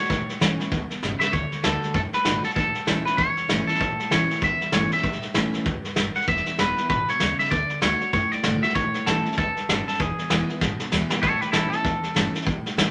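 A twangy, clean electric guitar carries the melody up front from the start, over a bright, full-bodied picked dreadnought acoustic and a vintage brush kit with a punchy kick and a rolled-off top, in a rollicking, rowdy rockabilly cut from a longer piece with a swung 4/4 feel. A woody, thumpy pizzicato upright bass on gut strings sits dark in the background beneath chords that move through A, D and E. Brief drum fills mark the turns, and at 11.2 s the electric guitar breaks into a clean solo, all in a moderate studio ambience.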